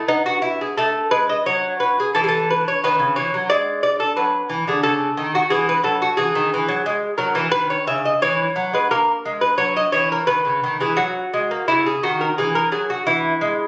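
Serene and radiant, this short passage of a classical, baroque-style dance unfolds on a solo lute that plays alone from 0.0 to 13.7 seconds, cut from a longer piece. The fingerpicked nylon strings sound bright and delicate, with double courses and some octave-doubled strings adding a shimmering fullness across a span from C#3 to E5. The playing moves in a flexible rubato over a 4/4 metre, giving the dance a relaxed, breathing quality. Its harmony drifts from E and A through a rootless E9 and C#madd9 into C#m, touches F#7 and C#m11, then settles back on E. Captured on a phone in the room and then given studio reverb and compression, the lute sits up front in a light wash of ambience.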